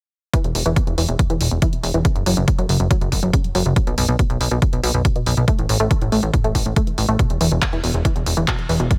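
Uplifting trance at 140 BPM in a straight 4/4, driving and euphoric, where a lush, detuned unison pluck spins bright sawtooth arpeggios with vintage 12-bit sampler grit, digital delay and sidechain pumping over an overdriven, up-front analog kick, handclaps and hi-hats from a punchy drum machine, and a funky, evolving sawtooth-and-pulse bass with a filter pluck and fast attack, all kept dry as the chords move through E5, F#5, B5 and A5 before returning to E5 at 7.2 seconds in this short cut from a longer piece.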